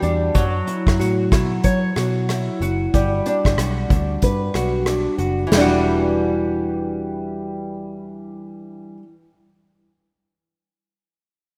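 A fingerpicked nylon-string guitar sits up front with a small, intimate tone, bathed in lush chorus and a warbly pitch drift as it moves through F#m7 and Gmaj7 before settling on Em9 at 5.5 seconds. This lonely, wistful bedroom-pop fragment in E dorian moves at 93 BPM with a gentle 16th-note swing, carried by a round, foam-muted vintage electric bass and an acoustic drum kit played with bundle sticks, its punchy kick and dark cymbals heard until 5.7 seconds. A lush hall reverb wraps the rough home-demo mix, cut from a longer piece.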